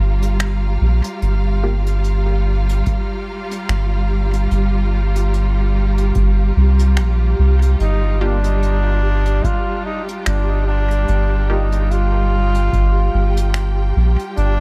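Spacious and deep, this ambient dub fragment rests on a single Gm7 chord, with a round, soft sub bass sitting up front beneath lush, distant bowed strings holding sustained chords throughout. A brushed jazz kit of finger snaps and hi-hat drifts through dub echo, joined from 2.9 seconds by a tape-warm electronic kick recorded in a large room, while a very quiet, muted chord stab with chorus flickers in briefly and returns from 8.2 seconds. At 7.8 seconds a brilliant, roomy solo trombone enters with a classical-style melody trailed by dub echo, all set in an echo-heavy studio reverb.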